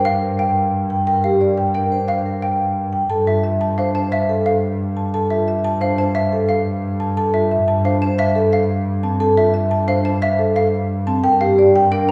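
Hypnotic and meditative, this minimalist classical pattern piece moves at 177 BPM in 6/4, cut from a longer work and set in a reverberant recital hall. Soft-mallet vibraphone arpeggios ring with a slow motor vibrato, while dry, rubber-mallet xylophone arpeggios sit higher above a dark, smooth rosewood marimba melody. A rich bowed double bass holds a low G2 beneath harmony that shifts from Gm7 to a rootless Dmadd9/G at 3.1 seconds and back to Gm7 at 11.2 seconds.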